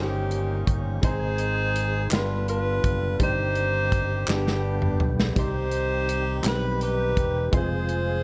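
A close-miked saxophone section carries the melody up front in this soulful, fervent slow gospel excerpt in 6/8, its jazz-style ensemble tone warm above a punchy, amped fingered electric bass. A woody, slightly detuned upright piano sits in the background while a very quiet, overdriven tonewheel organ holds gritty sustained chords through a slow rotary speaker, and a dark, smooth country drum kit with a tight kick plays a fill at 4.3 seconds. Hollow, dry group handclaps join from 2.1 to 6.8 seconds, with light studio reverb around the sound.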